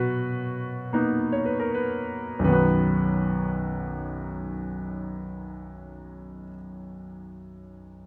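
Set in a lilting 6/8 with a free, rubato feel, this short classical excerpt moves slowly at roughly 35-52 BPM counted in dotted quarters, easing to a slower pace over its first 2.5 seconds. It is a lyrical solo for a bright grand piano in B major, peaceful and tender in mood, ranging from a deep B1 up to C#5. The instrument sits up front with a brilliant, smooth tone that carries a slight vintage character. The harmony opens on a Bmaj7 chord and settles onto a plain B chord at 2.5 seconds, where a new section begins and continues to the close at 8.1 seconds. Close, detailed microphones capture the piano, with a light reverb adding a gentle sense of space.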